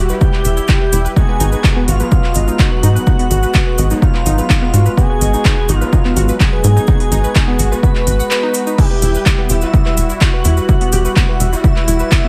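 Melodic techno at 126 BPM, this driving, dramatic cut pairs a smooth portamento lead with an airy, dreamy higher line, detuned unison pluck arpeggios and fat, warbling analog synth brass stabs over a tight sawtooth sequencer bass, a punchy up-front electronic kick, a house kit with metallic hats, claps and crash, and grainy cabasa, while the bass, pluck, leads, brass, hats and cymbals pump with sidechain over chords moving from Emadd9 to G#m7 at 1.2 seconds and back at 8.8 seconds.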